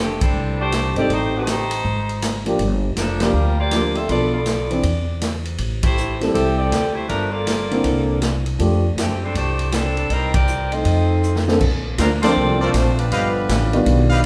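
A bright, tight saxophone section carries the melody over woody pizzicato upright bass and a swinging big-band drum kit with a punchy kick, opening this brassy, energetic big band swing excerpt in F major at 160 BPM. A slightly detuned upright piano with audible action noise comps from 1.0 seconds, band accents punch through the groove, and from 10.7 seconds a mellow trombone section adds a second line in the background. A drum fill at 11.2 seconds leads into a new section, where a brilliant trumpet section fires stabs from 12.2 seconds, all set back in a large, reverberant studio room.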